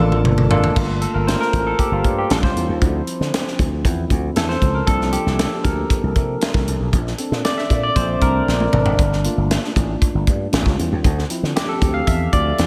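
Slick and nocturnal, this polished 1980s jazz-funk pop excerpt moves at 117 BPM in G dorian, with a barky, lightly overdriven tine electric piano taking a solo from 0.8 seconds over growly, punchy slap bass through an envelope filter and a tight funk drum kit with a high-tuned snare, whose fills open the piece and return at 8.5 seconds, all set in a small room with light reverb as the chords move from Gm7 through Dm9 to Bbmaj9.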